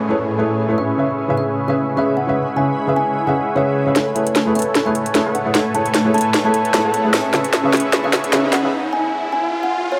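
Future bass in a half-time feel with a light swing, this short excerpt feels emotional and lush, built on a shimmering, ethereal pad that holds sustained chords beneath huge, detuned supersaw chords playing a bright riff through a cassette-tape character and a low-pass filter. A felt-muted upright piano adds soft, intimate accompaniment with audible action noise and a touch of digital delay, while a woody, ringing kalimba carries the melody from 0.8 seconds, also treated with delay. The harmony moves between Amaj7 and C#m7, with a filter sweep on the pad through the opening and another on the supersaw once the build-up begins at 4.0 seconds. There, a trap drum kit enters up front with a sharp snare and metallic hats, playing a fill that drives the build-up until it drops out, leaving a brief break from 8.7 seconds where the kalimba and a background riser carry on alone. A downlifter opens the piece, and a moderate shimmer reverb with a long tail gives the mix an airy, expansive space.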